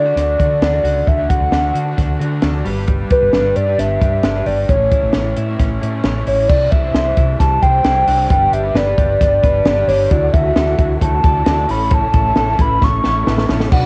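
Bright and nostalgic, this excerpt from a longer piece is jangly indie pop at 133 BPM in D major, with the character of a home cassette recording in a small, close booth. Up front, a hollow, clarinet-like synth lead carries the melody, its square and triangle tones layered with a breath of noise, sustained notes and vibrato, thickened by chorus. Beneath it, a growly, round fretless bass sits prominently, while a compact cocktail drum kit, dark and smooth with a high-tuned snare and punchy kick, gives the beat a tight, intimate feel and closes with a fill from 12.8 to 13.7 seconds. In the background, a direct-recorded clean electric guitar plays compressed arpeggios alongside a raw, overdriven garage guitar that adds lo-fi crunch. At 10.1 seconds a reedy combo organ enters with heavy vibrato and plate reverb, colouring the final Dadd9 and A chords after a progression that moves from D, G and A into Cadd9 and G.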